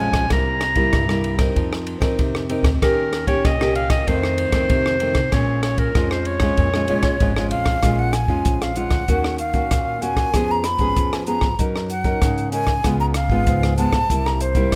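Lively and yearning, this samba and choro excerpt in Bb minor at 96 BPM opens with a clear, up-front clarinet solo over bright, fingerpicked nylon-string guitar, a woody pizzicato upright bass in the background and a dry, compact cocktail drum kit with a punchy kick, dark cymbals, hi-hat and rim clicks, until a breathy jazz flute with vibrato and a soft attack takes the melody from 6.9 seconds as the clarinet drops out at 7.5 seconds, all in a rough home demo mix with light small-room reverb.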